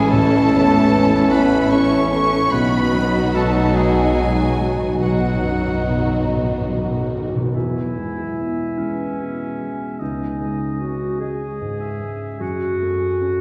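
Heard from far back in a wet church reverb, this hopeful, tender cinematic excerpt in E major drifts at a rubato 49 BPM in 6/8, with an expressive violin section singing the melody with vibrato and portamento over a dark, mellow grand piano with audible action noise, a pure flute, a distant oboe, lush second violins, a rich, very quiet viola section, clear French horn chords, a ringing thumb-plucked harp, cellos and soft-attack double basses, and round soft-mallet timpani from 2.5 to 7.5 s, before an up-front clarinet enters at 7.5 s.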